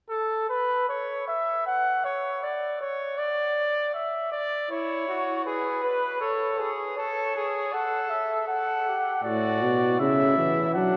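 A lively, joyful classical canzona for brass ensemble in an imitative style, opening with a warm trumpet carrying the melody with light vibrato, joined at 4.7 seconds by a clear trumpet on a second line and at 9.2 seconds by a mellow trombone with a vintage tone underneath, all within the long, dark wash of a cathedral reverb in this short excerpt cut from a longer piece.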